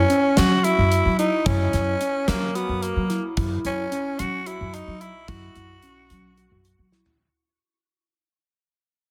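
A raspy, growling tenor saxophone with vibrato and dub echo sits up front, carrying the melody in this driving, intricate progressive instrumental in 7/8 at 220 BPM (eighths), set in F# mixolydian. A mellow tine electric piano plays clean arpeggios through its own dub echo, while a woody, thumpy pizzicato upright bass and a gated 80s drum kit with a fat snare and tight kick drive the uneven meter in a small, echo-heavy room. Cut from a longer piece, the passage fades out from its first moment, with a drum fill at 6.9 seconds.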